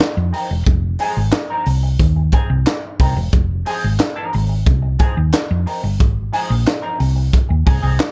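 A dark, dry production with little reverb frames this driving, sly funk cut at 90 BPM in F minor, a short slice of a longer piece. A crisp fusion drum kit with handclaps, hi-hat, tight kick and high-tuned snare sits up front in a small, pumping room, joined at 0.2 seconds by a round, amped short-scale hollow-body bass played with the fingers. A clean, picked semi-hollow electric guitar, colored by wah and analog chorus, sits lower in the mix as accompaniment over Fm7 before the harmony moves to Ab6 at 6.0 seconds.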